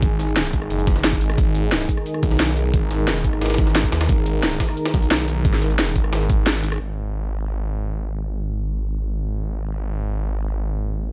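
Dry, with little reverb, this dark, aggressive technical drum and bass excerpt cut from a longer piece runs at 177 BPM in 4/4, opening on a drop where an overdriven, knocking electronic kick and an up-front drum and bass kit with a cracking snare, bright hats, rim click and shaker drive hard over a gritty, pitched-up breakbeat sampler kit with a high-tuned snare set in the background. A snarling, growling sawtooth bass with distortion and tube saturation sits up front, beneath a deep, moody analog pad of slow-attack sustained chords with chorus and sidechain pumping. The kick drops out at 6.5 seconds on a band accent, the drums end by 6.8 seconds, and bass and pad carry on alone until 11.1 seconds.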